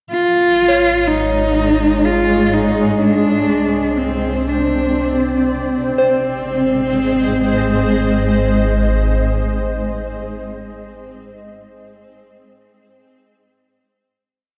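A dark, woody bowed cello opens this short, peaceful ambient piece in free time and Ab major, a single close player with vibrato stating motif-based call phrases from C4 to F4, its notes trailed by delay. Beneath it a deep, ominous drone rumbles on the root, nasal and detuned with a slow attack and long release, while a granular cloud pad enters at 1.1 s with blurred, slowly shifting chords that sit up front, mellow and full-bodied. A soft, pure FM bell scatters gentle arpeggio notes in the background, its chorus and delay giving them a faint shimmer, and it rings on alone until 11.4 s. The harmony moves from Absus4 to Csus2 before settling on a final Ab chord at 6.0 s, as the drone fades out and a filter sweep moves across the pad through the first 6 seconds. The whole piece sits in a wet concert hall reverb and carries the warble and pitch drift of worn cassette tape, lending the weightless mood a hazy, aged cast.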